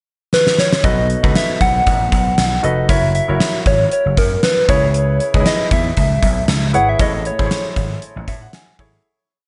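A lightly swung 16th-note groove at 117 BPM in 4/4 drives this short, moody and nostalgic 1980s-style pop piece, opening with a drum fill from 0.3 seconds in the pickup bar before the verse arrives at 0.8 seconds. The gated 80s drum kit sits up front with a punchy kick, a fat snare and a big backbeat of hi-hat, kick and snare, its gated reverb giving a bright, airy stone-room sound. A vintage slap bass plays a syncopated pop-funk line with chromatic approach notes, electric and amped, while a clear concert grand piano pushes close-voiced chords with short sustain, grace notes and short fills over a B7, F#7, C#m7 and Amaj7 progression. Above them a soft, round FM synth lead with a fast attack and gentle, warbling decay carries a hook-based melody, colored by chorus, tremolo and digital delay. The whole piece is bathed in light small-room reverb, and the piano closes with a fill from 8.0 seconds as the fade-out takes the track to its end.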